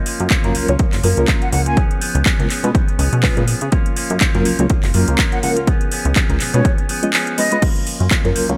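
A bright, twangy electric guitar riff through an envelope filter opens this joyful, feel-good filtered disco house excerpt at 123 BPM in F# major, quickly joined by an overdriven house drum kit with metallic hats, handclaps and crash cymbal, a plucky, funky analog bass, a punchy, up-front electronic kick and a reedy electric piano with fast tremolo and phaser, with the guitar, bass and piano pumping under a low-pass filter while a breathy, close-miked concert flute carrying 12-bit sampler grit and tape echo appears briefly at 1.4 seconds and then returns with the melody from 5.3 to 7.6 seconds over chords alternating between F#maj7 and C#7.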